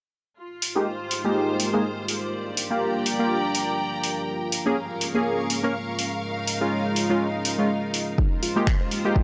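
Swung sixteenths of finger snaps and hi-hat from a tape-toned, up-front deep house kit set a moody, smooth groove at 123 BPM in F minor, as clear symphonic strings with light vibrato enter at 0.4 seconds over a pumping, warbling 12-bit pad moving from Fm11 through Gm7, Bbm7 and Eb9sus4. Round, full-bodied detuned sawtooth keys punch short stabs through a filter sweep with chorus and tape echo. At 8.2 seconds a deep electronic kick and a soft, gentle pluck arpeggio in the background arrive as the chords return to Fm11, all in a gritty, saturated hardware sound with lush hall reverb in this short cut from a longer piece.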